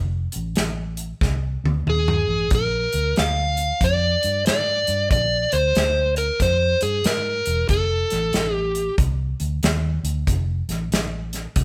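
Rollicking and laid-back, this short cut from a longer electric blues shuffle in F mixolydian swings at 93 BPM in 4/4, with a round, foam-muted electric bass carrying the groove from the start and a natural acoustic drum kit with a punchy kick and medium-tuned snare joining at 0.3 seconds, a drum fill at 1.2 seconds, and a dark, overdriven slide guitar taking the melody from 1.9 to 8.9 seconds over F7, Bb7 and F chords, all captured as a band playing live in one room with light reverb.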